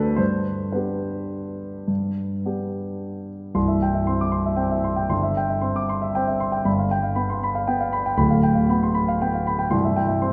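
Elegant and graceful, this short classical piano waltz moves in 3/4 with a flexible, rubato feel, its pulse drifting between 103 and 123 BPM. A solo grand piano, warm and natural in tone and placed up front, carries the whole passage and spans a range from C1 to D6. It opens in G major, then shifts to C major at 3.6 s, where a new section begins. The harmony moves from G to C, passes through G7 and settles back on C at 9.7 s. A lush concert hall reverb with a long 2.4-second decay surrounds the instrument, and the room is heard from further back, with a softened top end. The recording is a brief passage cut from a longer piece.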